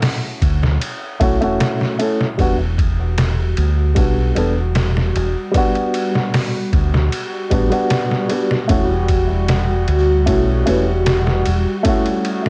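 A deep, round dub bass, fingered and sitting up front, anchors this dark, cinematic trip hop excerpt from 0.4 s, beneath a compressed, pitched-down sampler drum kit with a thumpy kick and a muffled cassette tone. A felt-muted upright piano plays soft, intimate accompaniment with short sustain, coloured by harmonic tremolo, low-pass filtering and tape echo, while a warbling, detuned pad enters at 3.0 s with slow-attack chords dressed in chorus, phaser and 12-bit sampler grit. The harmony moves from Dmaj7 to Em7 and on to a rootless Dmaj7/E, captured as a lightly reverberant home cassette recording.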